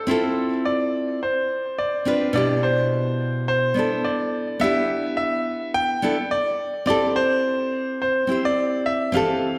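A clear concert grand piano carries the melody up front, its polished, intimate tone showing audible action noise, deep bass and a long sustain, all touched by tape echo. Beside it, a bright nylon-string guitar plays fingerpicked accompaniment in a classical manner, with finger squeaks adding a close, acoustic detail. This sunny, relaxed chillout passage, cut from a longer piece, moves in 4/4 with a light swing on the sixteenths, and both instruments play together from start to finish. The harmony opens on Dm7 and Csus24, then settles onto Cmaj7 at 2.4 seconds before shifting to a rootless Fmaj7 at 6.9 seconds. A wet recital hall reverb surrounds the pair, giving the intimate duo a gently spacious setting.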